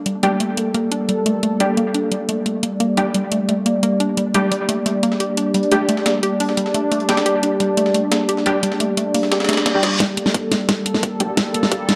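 Aggressive and futuristic, this dark, technical drum and bass excerpt runs at 175 BPM in straight 4/4 in G minor, opening on a Gmadd9 chord. A bright, airy sawtooth pad sustains resonant chords with a filter swell, while a lo-fi, warbling pluck spins mellow arpeggios through chorus and dub echo, both pumping against the sidechain. Alongside them a deep, moody ambient pad with a sub octave and its own reverb adds a full-bodied, shadowy texture from 0.5 seconds. Up front, a dubstep kit drives the track with a huge snare and metallic hats, joined by bold, ring-modulated orchestra-hit-style stabs, and a gritty, compressed breakbeat kit with a high-tuned snare enters at 4.5 seconds. A reverse cymbal at 9.4 seconds leads into a build-up and drum fill at 10.0 seconds, where a punchy, tape-warm electronic kick sits in the background, all wrapped in a lush, wet hall reverb.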